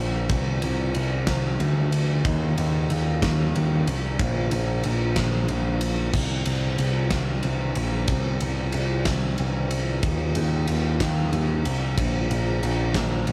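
The rhythm moves in a slow, straight 6/8 at 62 beats per minute counted in dotted quarters, giving this brooding, melancholic post-rock fragment in C minor a heavy, deliberate sway. A growling picked electric bass opens the cut at 0.0 seconds, its overdriven, amped tone sitting up front and ranging low between Bb1 and Eb2. At 0.3 seconds a huge arena drum kit joins, with a punchy kick, a fat snare, and bright crash and ride cymbals carrying a pumping hall sound. Both parts stay up front together through the end at 13.3 seconds, the bass a little louder than the drums. The overall mix is dry and close, with little reverb. The passage is lifted from a longer piece and holds a single section throughout.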